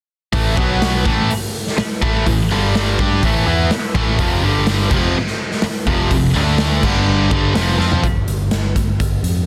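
A dense, heavily limited mix in a small, stone-bright room opens this menacing, heavy hard rock clip at 125 BPM in a straight 4/4, with a raw garage drum kit sitting up front, its punchy kick, medium-tuned snare, hi-hat, toms and crash sounding gritty and saturated in a pumping room. Two picked electric guitars, one high-gain and one tight, grind out a bright distorted riff over power chords such as A5, G5, F5 and D5, while a growly, amped picked bass punches underneath. After a drum fill at 7.8 seconds the guitars drop out at 8.0 seconds, leaving bass and drums to carry a short Fsus2 passage until 9.4 seconds.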